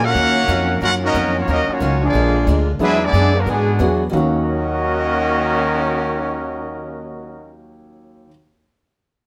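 Set in light reverb, this brassy, dramatic big band swing excerpt puts a clear trumpet section with light vibrato up front on the melody beside a woody, thumpy pizzicato upright bass, while a bright trombone section carries a second line, a boxy picked parlour acoustic guitar with finger squeak sits in the background, a very quiet saxophone section holds sustained chords until 2.8 s, and a warm, intimate grand piano with audible action noise joins the accompaniment from 2.8 s.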